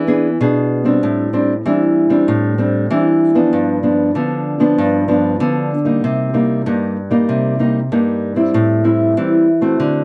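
A light reverb frames this sunny, playful samba excerpt, with a solo nylon-string guitar heard up front, its acoustic tone small and thumb-plucked. Moving at 96 BPM in a straight 4/4, the guitar plays alone for the full 10 seconds between G2 and G#4, passing through E7, Am11, G7, Cm7 and Am7.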